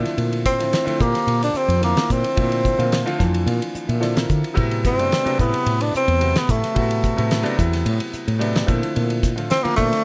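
A warm, close-miked tenor saxophone with light vibrato and a soft attack leads this driving, funky electric jazz fusion excerpt from 0.5 seconds, over a round, woody fretless bass, a damped 70s drum kit with a fat snare and tight kick, and a clear concert grand piano that adds fills at the opening and between 2.9 and 4.6 seconds, in a lightly reverberant room as the harmony moves between Bbmaj9#11 and Am69.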